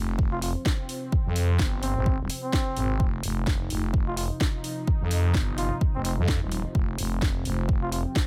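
A detuned sawtooth pad with chorus and a growling, overdriven FM bass open this bouncy, swaggering bass house excerpt at 128 BPM on an F5 chord, both pumping from sidechain, before a punchy, up-front electronic kick arrives at 0.2 seconds and a house kit with a cracking snare and bright hats, also overdriven, follows, while a dark, veiled, bucket-muted trumpet plays a close-miked jazz-style solo with light vibrato and dub echo over a 16th-note swing in a dry mix.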